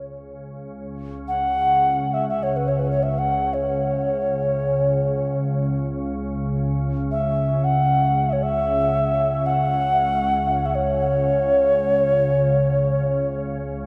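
An alto ocarina carries the melody up front from 1.3 seconds, its clay tone airy and expressive, with vibrato, tongued notes, rolled-off highs and a touch of delay, moving between B4 and F#5 in C# minor pentatonic. Beneath it, an organ-like drone of detuned sine unison tones sustains from 0.1 to 13.9 seconds, with a slow attack, long release, ensemble chorus and its own reverb, spanning C#2 to C#3. This free-time meditative world piece, cut from a longer work, feels spacious and haunting, bathed in a huge ambient reverb with a 7.3-second decay.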